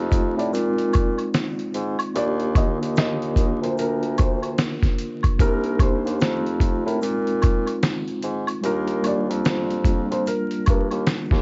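Built on a swung 4/4 groove, this dreamy, mellow lo-fi hip hop fragment is cut from a longer piece and rides a compressed, sampler-style drum kit with a thumpy kick and fat snare, re-recorded in a small room and sitting up front alongside hi-hat. Beneath it, a bassoon carries the bass line in a classical style, its light vibrato and roomy, distant tone still placed up front. A clean tine electric piano, heard through its built-in speakers and softened by a low-pass filter, supplies the accompaniment over chords moving through F7, Bb7sus4, Ebmaj9 and Cm7. In the background, a felt-muted upright piano plays an intimate melody with thick felt and short sustain, coloured by low-pass filtering and tape echo, until it stops at 11.0 seconds. Close, dry egg shaker, woodblock and group handclap add a light acoustic layer, while light reverb, small room ambience and vinyl crackle give the whole recording a dusky, dulled top end.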